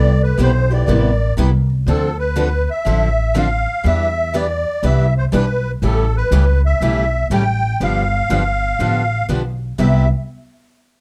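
A swung 4/4 at 121 BPM drives this playful, charming acoustic string swing piece in C major, with a thumpy, woody pizzicato upright bass sitting up front beneath two picked steel-string acoustic guitars, one boxy parlour guitar and one full-bodied jumbo whose fresh strings give off audible finger squeak. Over them, a reedy musette accordion carries the melody, its shimmering wet tuning bathed in plate reverb, while a felt-muted upright piano adds a soft, intimate second line with audible action noise in the background until 1.7 s. The chords move from Cmaj7 through Dm9, Em7, A9 and G9 before returning to Cmaj7 at 9.8 s, all within a dark, warm production cut from a longer piece.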